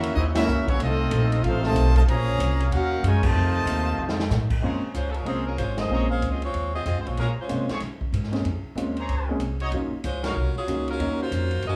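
Bright trumpets carry the melody over a dark second line from the trombone section and very quiet nasal chords from straight-muted trombones, while a woody pizzicato upright bass and a distant, roomy swing kit with a boomy kick drive this sultry, brassy big band swing in Bb minor at 188 BPM. At 4.6 seconds the brass melody gives way to an intimate concert grand piano with audible action noise and to distant trumpet stabs. From 4.9 seconds an edgy, tight saxophone section takes up the melody over Bbm9 and Ebm9 harmony, with band accents punctuating this excerpt from a longer piece.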